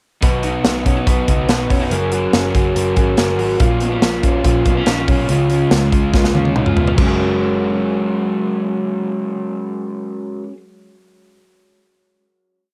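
Nostalgic and youthful, this short jangly indie pop piece at 142 BPM in F# major runs through a pre-chorus. A punchy, polished studio drum kit drives it with a brisk indie backbeat, while a dark, foam-muted picked bass plays a driving eighth-note line with slides. A raw garage guitar strums overdriven open chords in eighths, and an up-front, slightly broken-up electric guitar plays a fingerpicked roll pattern through tape echo. A drum fill at 6.1 seconds gives way to a held F#add9 final chord at 7.0 seconds, and the whole piece carries the light reverb of a home cassette recording.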